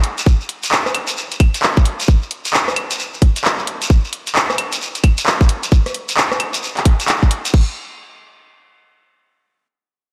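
A light reverb and digital ambience frame this short, soulful and moody UK garage excerpt, which moves at 132 BPM in 4/4 with a 63% swing on the sixteenths. A punchy analog drum machine, re-recorded in a large room and placed up front, supplies claves, crash cymbal, handclaps, hi-hat and rim click from the very start. An electronic kick drum joins at 0.3 seconds, tight and layered, re-recorded in a small room and sitting prominently at the front of the mix. Beneath them, an acoustic shekere adds a grainy, mellow texture from a small room, sitting lower in the balance. The percussion carries the groove through the opening section, and a brief closing section begins at 7.5 seconds.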